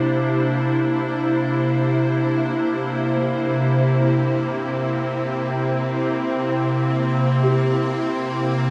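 A slow, straight 4/4 pulse at 70 BPM carries this weightless, warm ambient excerpt. It rests on a C7 chord held by an evolving wavetable pad that morphs through sine tones with slow attacks and long releases, its ensemble chorus and built-in reverb giving it a bright, up-front presence. At 2.7 s a very quiet felt-muted upright piano enters with soft, mellow arpeggios between E3 and C5, its intimate, natural tone carrying audible action noise, while a wet cathedral reverb with a 6.1 s decay surrounds the whole room.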